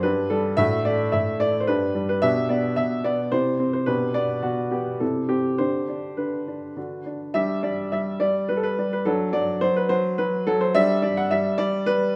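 A classical-period piano sonatina in G major, this short excerpt moves at 107 BPM in 3/4 with a rubato feel that gives it an elegant, playful character. A baby grand piano plays solo throughout the 12.2 seconds, its tone open and up front, ranging from G2 to F#5. The harmony moves gracefully through G, D/A, G/B and C before settling on D at 6.8 s, closing the opening section. A second section begins at 7.4 s, shifting to G5 and D/F# before returning to G5 at 10.7 s. A generous recital hall reverb surrounds the instrument with a lingering, spacious tail, and the tuning sits at A4 = 439 Hz.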